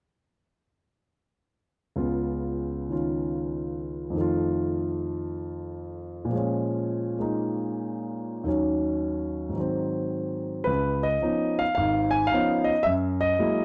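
A lone grand piano, intimate and up front with audible action noise and long sustain, plays a swinging, rubato solo jazz fragment from 2.0 to 13.6 seconds in a dry, close 1970s-style studio sound, moving through Db7, F7, Bbm7, Ebm7 and Ab7 before shifting at 10.7 seconds to Db9 and Gb9 in a warm mood.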